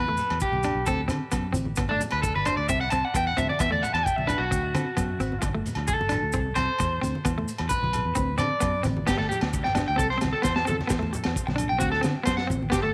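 A bright, compressed electric guitar leads this joyful, carefree highlife piece, taking a picked solo until 9.1 seconds, while a twangy, slightly broken-up guitar plays arpeggios up front with tape echo. A round, foam-muted fingered bass sits beneath them, and within the first moments low-tuned congas played with soft hands, grainy maracas and ringing agogo bells join, the bells and congas tucked into the background and all three close and dry. A crunchy breakbeat kit drives the straight 4/4 groove at 132 BPM with a punchy kick, a high-tuned snare, rim clicks, hi-hat and dark crash cymbals, its sound gritty and saturated with a rolled-off top. In G major, the harmony cycles through Em, D7, Gsus2, C and E5, then shifts into a second section at 9.1 seconds where a C6 colours the progression. Light reverb and a small room ambience frame this excerpt, which is cut from a longer piece.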